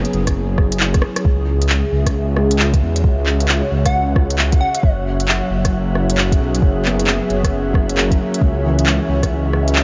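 Swung sixteenths in 4/4 drive this melancholic, ghostly future garage excerpt. An up-front electronic kit supplies crisp hats, handclaps and rim clicks alongside a soft kick, both in studio reverb, with a brief drum fill at 0.9 seconds. A menacing, saturated detuned saw bass and an airy, chorused pad pump under sidechain, as does a felt-muted upright piano with audible action noise and tape echo sitting in the background, all moving between F#7sus4 and C#m; a wind-like noise texture drifts in at 2.2 seconds, and a punchy, catchy square-wave lead with tape echo appears briefly at 3.9 seconds.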